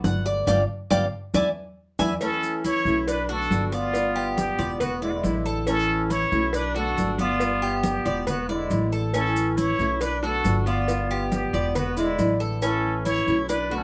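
A straight, danceable 4/4 Cuban son and guajira groove with a relaxed feel rests on thumpy, woody pizzicato upright bass, thin-skinned congas, tight, high-tuned bongos and cowbell set back in the mix, and grainy maracas, while a fingerpicked flamenco guitar with finger squeak accompanies and a metallic, double-strung Cuban tres plays arpeggios, taking a short solo over band accents and a drum fill before a breathy, plunger-muted trumpet with wah-wah and scooped notes enters on the melody at 2.2 s alongside a punchy, vintage-toned clarinet on a second line, all captured live in one room with moderate reverb in this cut from a longer piece.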